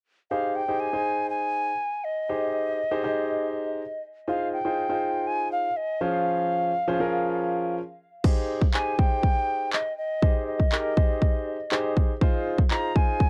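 Dance-pop at 121 BPM with a driving, confident mood, this short excerpt sets a reedy, airy alto ocarina melody with vibrato over a clear concert grand piano whose sidechain pumping, audible action noise and long sustain give the chords of Abmaj7, Fm7 and Dbmaj7/F a polished pulse. At 8.2 seconds a punchy, layered electronic drum kit enters up front with kick, handclaps and crash cymbal. The dry mix is colored by worn cassette tape with a warbly pitch drift.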